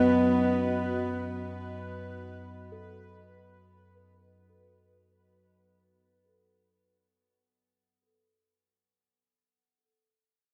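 Unsettling and cavernous, this dark ambient drone fragment in free time opens with a husky, nasal horsehead fiddle melody up front in a diffuse delay, over a deep, moody pad of sustained chords, a warbling analog drone and a bubbling, resonant stepped-filter texture, all within a fade-out across the first 4.3 seconds, as soft, metallic gamelan-type bossed gongs enter with quiet bronze arpeggios at 2.7 seconds and ring on to 9.8 seconds in a vast cathedral reverb.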